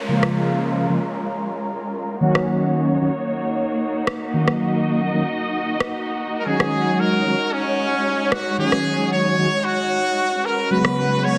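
A veiled, con sordino string section with a filter sweep opens this cosmic, sensual nu-disco fragment alongside a brief electronic downlifter, as round, detuned synth brass with chorus and tape-delay colour and a layered electronic rim click settle into a straight groove over Bbm7 and Ebm7, before a brilliant trumpet section carries the melody with vibrato and tape echo from 6.4 seconds, all set in a digital echo-chamber ambience under a dense, heavily limited modern master.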